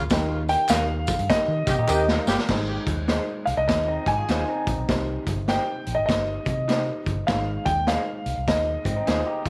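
Uplifting and joyful, this swung uptempo 1960s-style soul excerpt opens with a horn section through tape echo, tambourine and handclaps over a boomy, gritty garage drum kit, round muted electric bass and a dark, woody upright piano, then after a drum fill at 1.9 s the horns and percussion drop out at 2.4 s as an intimate concert grand carries the high melody, backed by two slightly broken-up, lo-fi electric guitars, one playing stabs and one a riff, in light studio reverb.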